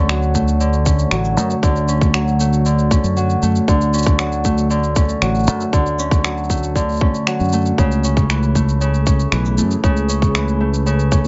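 Hopeful and pastoral, this 117 BPM folktronica excerpt in 4/4 puts ringing, fingerpicked Celtic harp arpeggios with tape echo up front over a punchy fingered electric bass, while a very quiet, warbling, nostalgic tape-like pad holds detuned sustained chords and overdriven electronic finger snaps, shaker and a tight kick drum, roomy and reverberant, keep a straight pulse as the harmony moves from Dmaj7 to Amaj7 at 7.8 seconds, all within a mellow, dulled top end.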